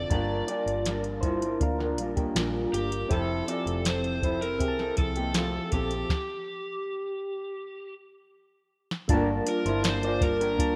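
A soft vintage rhythm box sits up front with a deep kick, crisp snare and metallic hats, anchoring this wistful, mellow slice of indie bedroom pop, cut from a longer piece, alongside a round, foam-muted fingered bass. An overdriven slide guitar carries the melody through lush chorus and slapback echo, while a clean, dark electric guitar with analog chorus and vibrato, gentle electric-piano-like synth keys with a cassette-tape tint, and a slightly broken-up second guitar through a small old amp fill out the texture. A stop from 6.1 seconds gives way to a drum fill at 8.3 seconds before a new section arrives at 9.1 seconds, the whole rough home-demo mix wrapped in light digital ambience.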